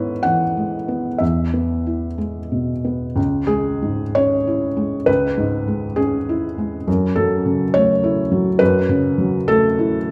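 A felt-muted upright piano plays alone in this short neoclassical minimalist passage, its tone soft and mellow with a short sustain and audible action noise sitting close to the listener. The mood is peaceful and hopeful, moving in a lilting 6/8 with a rubato feel that lets the pulse breathe freely. The harmony begins on E/G# and E before shifting at 3.2 seconds to C#m, then settling onto F#m7 at 6.9 seconds. The piano spans from C#2 up to F#5, giving the intimate instrument a full register despite its muted character. A moderate recital hall reverb surrounds the natural, up-front sound, adding a gentle sense of space as the fragment, cut from a longer piece, ends at 10.1 seconds.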